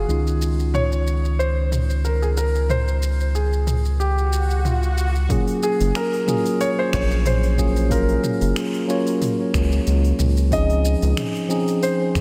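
Sunset chillout in Gb lydian at 92 BPM, relaxed and warm, with a lightly swung 16th feel and a dreamy mix soaked in lush hall reverb, cut from a longer piece. A concert grand piano carries the melody over a mellow, clean tine electric piano, both trailed by diffuse ambient delay, while a round, dark analog bass with tube saturation sits up front and a deep house kit of finger snaps, smooth hi-hat, shaker and toms ticks along beneath. An electronic swell arrives at 4.3 seconds, and at 5.3 seconds a deep, layered electronic kick enters in the background as the harmony moves from Dbmaj9 to Gbmaj9 before returning to Dbmaj9.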